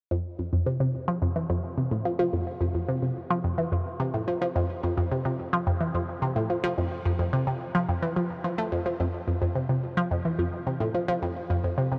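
A lone resonant blip pluck opens this ambient fragment at 0.1 s and carries it alone to the end, a squelchy, juicy synth tone built from pulse and sawtooth waves, with a fast attack and short decay. It sits bright and up front, moving between F2 and A3 in F major at a steady 108 BPM in straight 4/4, tuned to A4 = 444 Hz. A filter sweep keeps its character evolving, while phaser and tape echo add motion and trailing repeats to each blip. A huge ambient reverb with a long 7.4-second tail surrounds it, giving the sound a cosmic, luminous glow. A new section arrives at 9.0 s and runs until the fragment cuts off at 12.0 s, as if lifted from a longer piece.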